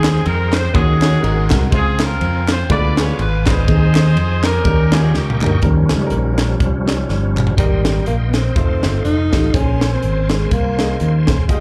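Heard through a club PA with light reverb, this soulful, hopeful uptempo gospel piece in Ab major swings at 123 BPM, as a tight vintage horn section carries the melody over woody upright piano, a reedy tonewheel organ turning on a slow rotary speaker in the background, an up-front fingered electric bass, a crisp fusion drum kit with punchy kick and high-tuned snare, and background handclaps, before the organ takes a short solo at 5.6 seconds and a breathy, close-miked alto saxophone with scooped notes enters at 7.6 seconds.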